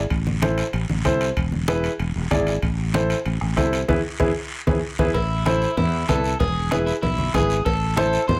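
A woody, intimate upright piano with audible action noise sits up front in this driving, passionate cumbia fragment alongside a bright, growly fretless electric bass and a background bed of soft-beater bombo, ringing low-tuned congas, raspy close guiro and saturated metal-shell timbales with cowbell, as a band accent at 3.9 seconds and a drum and piano fill at 4.2 seconds usher in a slightly broken-up, picked electric guitar at 5.1 seconds.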